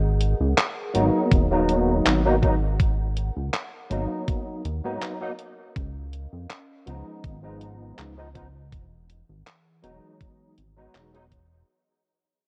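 Melancholic and hazy, this vaporwave fragment drifts at 81 BPM in G# minor with a light 16th-note swing, moving from G#m9 through C#9 to Emaj9 as a fade-out and a filter sweep on the pad run across its full 11.7 seconds. A warbling, nostalgic pad of detuned, wave-folded tones sits in the background under chorus and built-in reverb, while a glossy, evolving synth bass with a pulse-width-modulated pluck, a barky tine electric piano through ensemble chorus and analog delay, and detuned 8-bit handclaps and hi-hat alongside a thumpy electronic kick sit up front, the drums carrying 12-bit sampler grit. The whole mix wears a worn cassette character with tape pitch drift and light reverb, and the electric piano enters at 0.9 seconds and the kick at 1.3 seconds.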